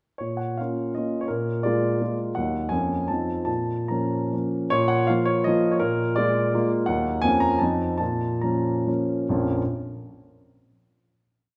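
A romantic classical triple-time dance for solo grand piano, nostalgic and wistful, its warm, long-sustained tone sitting up front in a wet recital hall as a single-line melody with dotted rhythms floats over bass and chords stressing the second or third beat, the rubato pulse slowing from 6.4 seconds through the climax before a final chord at 9.3 seconds.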